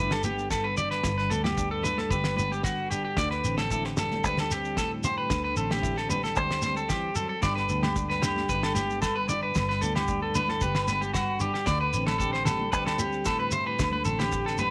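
Light reverb and a small-room ambience give this short cut from a longer highlife guitar band piece a snug sense of space. Up front, a twangy, slightly broken-up electric guitar picks arpeggios through tape echo, while a clean semi-hollow electric guitar adds hollow-body accompaniment shaded with tremolo. Underneath, a round, foam-muted fingered bass sits dark and direct, and a dry 70s drum kit delivers a fat snare and tight kick in a straight 4/4. A close, mellow, grainy shekere and thick-skinned, medium-tuned congas set in the background fill out the percussion, with ringing agogo bells joining from the live room at 7.4 seconds. The harmony moves between G and D7sus4, keeping the mood joyful and sunny.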